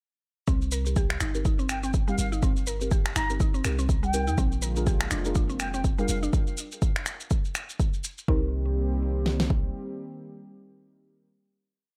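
A swung, four-on-the-floor afro house groove sets the pulse, with a deep house drum kit putting a deep kick and fat snare up front, and a layer of programmed electronic shaker hats and finger snaps on the backbeat, both tape-toned and re-recorded in a small room. Beneath them, an 808-style bass with a boomy sine body and noise layer plays a dub-style line that decays and pumps with the sidechain. A woody, round mallet-like synth pluck repeats a 16-step arpeggio sequence through chorus and delay. Dark, syncopated chord stabs in close voicing carry a phaser and a filter sweep, while a smooth, detuned analog pad with a slow attack enters at 4.4 seconds to hold sustained chords. Between 1.7 and 6.2 seconds, a mellow, airy concert flute with a straight tone drifts in from a distance in short phrases trailed by delay. The hypnotic, spiritual groove settles at 8.3 seconds onto a closing minor-seventh chord held by the stabs and pad, all in a dry, close-sounding space.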